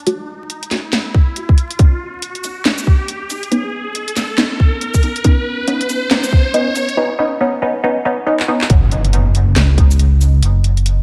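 Dark and meditative, this deep dubstep excerpt moves at 139 BPM with a swung half-time feel, building over F#m and Badd9 as a muted, detuned dub chord stab with a filter sweep, phaser, analog chorus, cassette tape and dub echo sits up front beside a rising sound effect. A garage kit of cracking snare, handclaps, shaker and warm hats is joined by a tight electronic kick at 1.1 seconds, all under a moderate echo-chamber reverb and vinyl crackle. After a drum fill, the drop at 8.7 seconds lands with an impact and a deep, rumbling, beating saw bass on F#5.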